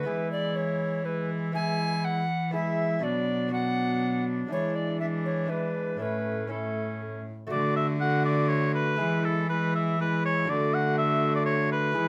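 A clear oboe carries the melody up front, singing with a light vibrato in a poised classical style through this courtly, stately renaissance-style consort dance in triple time. Alongside it, a bright tenor recorder plays a second line with an airy wooden tone, a crisp chiffing attack and its own vibrato. A rich, reedy cello, one bowed player with a period gut-string sound, anchors the bass close and up front, while a mellow trombone adds soft-attacked accompaniment with a smooth top. A delicate fingerpicked lute, its double gut strings partly doubled at the octave, fills in the harmony beneath, as chords of E, B minor, A and D shape the phrases. The whole consort plays together from 0.0 to 12.1 seconds in a short passage cut from a longer piece, with its opening phrase returning at 7.5 seconds, captured by close, detailed microphones in a light reverb.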